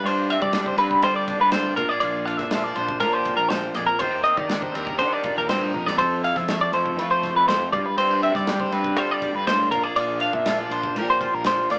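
A rough rehearsal-room recording with a small-speaker sound and moderate reverb frames this intricate, wistful slice of math rock and midwest emo, cut from a longer piece. A bright, compressed twelve-string electric guitar sits up front with picked arpeggios, while a twangy, fingered electric guitar accompanies and a round, overdriven fuzz bass sits beneath, over chords moving from G7sus4 through Bb7, Ebmaj7 and Fmaj7. A loose acoustic drum kit with dark cymbals and a punchy kick enters at 0.1 seconds and plays a fill at 5.7 seconds.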